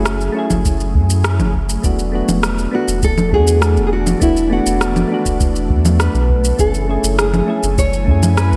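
A straight 4/4 groove of layered electronic rim clicks, shaker and congas, joined by a deep analog kick at 0.5 seconds, carries this wistful sunset chillout excerpt, where a thumb-plucked nylon-string guitar with tape and slapback echo sings the melody over gentle, chorused electric-piano-like synth keys, an ethereal, detuned pad drifting in the background and a round, up-front sub bass, the whole mix sitting in a lush hall reverb that gives it a big arena sound.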